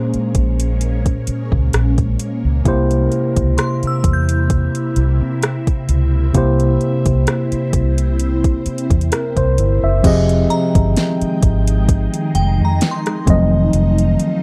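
A mellow tine electric piano and an ethereal, airy pad with chorus, phaser and sidechain pumping open this late-night, longing contemporary R&B excerpt in F minor at 65 BPM with a light 16th-note swing, soon joined by a round, foam-muted fingered bass and a smooth, overdriven electronic drum kit with a fat snare and metallic hats, while a glassy FM synth bell with tremolo and slapback echo enters at 3.6 seconds as the harmony moves from Bbm9 and C7 to Fm9 at 10.0 seconds and F7b9 at 13.3 seconds.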